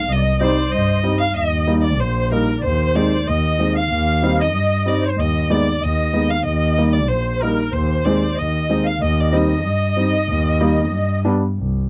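This dry, close recording has the intimate feel of a 1970s studio, with little room sound around the players. It is a short, soulful and bittersweet klezmer piece in 2/4 with a straight feel, cut from a longer work. A clear, focused single violin carries the melody with vibrato, while a reedy musette accordion with its shimmering tuning shadows it as a second line in the same register. Beneath them, a bowed double bass sits up front with a soft, pure, floating tone played sul tasto, and an upright piano fills in woody, short-sustained chords. The harmony moves from C minor through E-flat and its related chords over an E-flat in the bass, with a brief turn to A-flat minor at 5.2 seconds before closing on G at 10.9 seconds.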